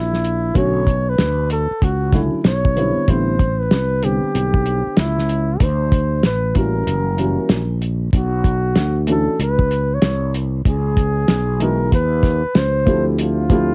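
A loosely swung 16th-note groove at 95 BPM in 4/4 sets the pace for this smoky, nocturnal jazz-hop cut, taken from a longer hip hop piece. The cloth-damped drum kit sits up front with a thuddy, dry sound, a fat snare, a tight kick and a rolled-off top, all colored by cassette tape. A sustaining fretless electric bass adds a growly, direct-amped low end, while a woody upright piano joins at 0.5 s with audible action noise and a slightly detuned, vintage character. Over them, a mellow flugelhorn carries the solo melody with a soft attack, light vibrato and a plate-reverb sheen, also tinted by tape. The harmony moves through rich extended chords from Bm11, reaches a break on F#7b9 at 6.9 s, then opens a new section at 8.1 s on Bmadd9 before closing on Dm11. The whole mix has the intimate feel of a home cassette recording, with light reverb and a bed of vinyl crackle.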